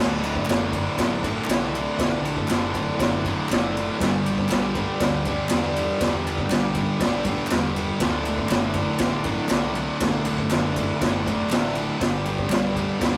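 A bright, fuzz-drenched guitar riff leads this swaggering, raw garage rock excerpt, double-tracked and compressed up front in a low register from D2 to G3. Beside it, a raw garage drum kit sits equally forward from 0.2 seconds, its boomy kick, medium-tuned snare and ride cymbal sounding gritty and saturated with a rolled-off top. Behind them, a buzzy vintage combo organ holds sustained chords with light vibrato, while a dark, round picked bass with overdrive rumbles in the background. A very quiet, crisp group handclap adds human texture from 0.5 seconds. At a straight 120 BPM in 4/4 and D major, the chords move between D and G in a rough rehearsal-room sound with moderate booth ambience and warm, saturated character.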